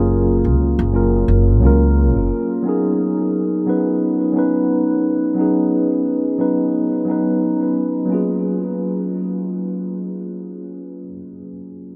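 Blissful and smooth, this short cut from a longer sunset chillout piece moves with a gentle sixteenth-note swing in 4/4. A mellow tine electric piano carries the accompaniment throughout, its clean tone heard through its built-in speakers and trailed by a delay, sitting up front in the mix. An acoustic upright bass, plucked pizzicato on steel strings, opens alongside it with a woody, thumpy presence before dropping out at 2.3 s. The harmony settles on a major seventh chord, drifts to a sixth-nine chord, and returns to the major seventh as a new passage begins at 8.1 s. A huge ambient reverb with a long tail soaks the whole mix, giving it a dreamy quality.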